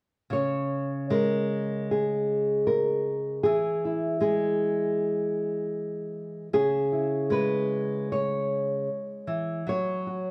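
Intimate and melancholic, this short passage from a longer folk piece features a single nylon-string guitar played solo in a fingerstyle manner. The tempo sits at an unhurried 77 BPM in a straight 4/4, with the music set in C# dorian. The guitar has a dark, small, thumb-plucked character on fresh strings, and it sits up front in the sound, spanning from C#3 up to C#5. The harmony moves from a C#5 opening through E and C#m before arriving on F#5 near 9.7 seconds. A light reverb gives the close, quiet recording a gentle sense of space.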